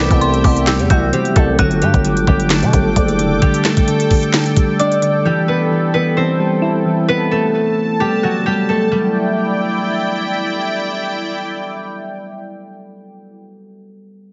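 A bright, ringing concert harp carries the melody up front in this menacing, melancholic trap piece at 131 BPM in a half-time E minor feel, joined by an eerie FM synth bell, round electric-piano-like keys and an evolving sawtooth pad, while a growling 808-style bass and a trap kit with a knocking kick and 12-bit sampler grit fall away within the first 5.1 seconds, and the mix sits in a recital-hall reverb with a heavily compressed, radio-like sound.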